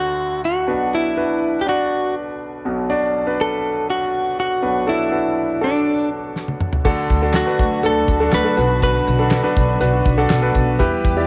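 Piano-driven pop at 122 BPM with an earnest, driving mood, this cut from a longer piece opens with a clear, polished concert grand piano and a clean, direct-recorded electric guitar carrying the melody over D and Bm chords, both up front and given a cassette-tape tint. A drum fill at 6.4 seconds brings in a damped 70s kit with a fat snare, tight kick, dark cymbals and handclaps, and at 6.9 seconds a woody, growly pizzicato upright bass joins alongside a dark, sul tasto string section holding soft-attack chords in the background. The whole home cassette recording sits in light reverb and studio ambience, with the guitar stopping at 9.8 seconds.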